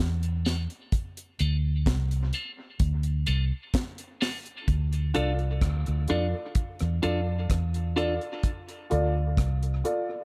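Dub reggae in D minor at a slow 64 BPM, this spacious, deep excerpt sets a round, punchy muted bass and a dry reggae kit with a high-tuned snare and tight kick up front, while a clean, picked electric guitar carries dub echo from 0.5 to 8.1 seconds and a boxy, woody upright piano with audible action noise adds echoing stabs from 5.1 seconds, all in a small, lightly reverberant room.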